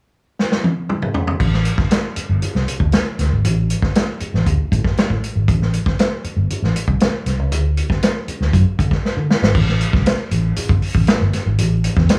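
Sly and funky, this short excerpt of straight-feel funk in A dorian moves at 118 BPM, opening with a drum fill on a vintage kit whose dark cymbals, medium-tuned snare and punchy kick sit up front with a rolled-off top. At 1.4 seconds a muted, fingered electric bass enters with a round, foam-muted, amped tone ranging from G1 to D3, and another drum fill at 9.0 seconds leads into the closing passage. A light reverb gives the pair a small-room ambience.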